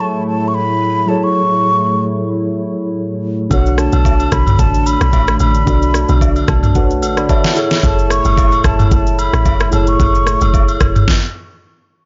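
This amapiano excerpt opens on an airy concert flute melody with tape echo, sitting over a clean tine electric piano and a soft, detuned pad shimmering with chorus, all moving from F#m9 in a deep, late-night mood. At 3.5 seconds the harmony shifts to Bm9 as the rhythm section arrives: a round, percussive log drum bass with a dark, decaying tone, and a produced electronic kit with a knocking kick, deep snare, rim click, shaker and toms sitting up front. Agogo bells and woodblock join at the same point, placed distant in a large room alongside tube shaker and group handclap. The tempo is 111 BPM in 4/4 with a gentle swing on the sixteenths, and the electric piano adds a fill from 6.2 to 7.8 seconds, during which the chords return to F#m9 at 7.6 seconds. The mix is dry and dark-toned, and the music halts at 11.1 seconds for a closing stop.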